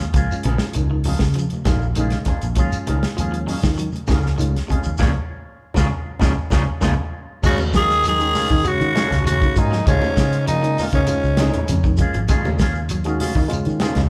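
A straight 4/4 afrobeat groove at 99 BPM in Eb minor, hypnotic and funky, is driven by a dry, up-front soul drum kit with a tight kick and a round, punchy fingered bass, while a grainy shekere and low-tuned, distant congas sit in the background. An edge-of-break-up electric guitar picks twangy arpeggios, a second guitar fires envelope-filtered stabs through spring reverb, and a reedy electric piano with harmonic tremolo fills out the Db6 and Ebm11 changes, with a band accent and a drum fill closing out the first half at 7.4 seconds. A raspy, growling tenor saxophone then carries the melody from 7.5 to 12.0 seconds over a roomy trombone second line, the whole band captured live in one room with light reverb in this excerpt from a longer piece.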